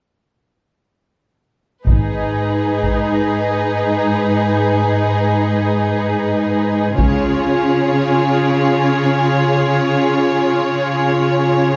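Captured on a scoring stage with moderate reverb, this dark, relentless excerpt of epic orchestral film score unfolds in free time in G# dorian, moving from G#m to C# at 7.0 seconds. A bowed string section carries it from 1.9 seconds: focused violins sing the melody over a smooth second violin line, rich violas fill the middle, and up-front, close cellos anchor the bass with lush vibrato. Woody double basses and a taiko ensemble struck with heavy sticks in a live room land only in brief bursts at 1.9 and 7.0 seconds, driving each chord change.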